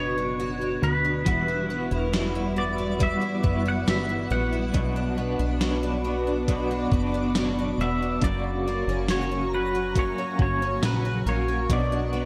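A twangy, clean pedal steel guitar carries the haunting, melancholic melody of this dream pop piece, played with fingerpicks and slide and drawn out in volume swells. A shimmering, octave-doubled twelve-string acoustic guitar picks arpeggios through delay, a punchy, funky analog bass plucks up front, and a dark, slightly broken-up electric guitar with tremolo enters at 1.2 s, just before a gated 80s drum machine brings thumpy kick, hi-hat and gated-reverb snare. A cloudy, detuned granular pad holds blurred chords in the background, a faint sparkling granular texture drifts in from 2.3 s, and the whole passage sits in a lush hall with bright 1980s-style digital production.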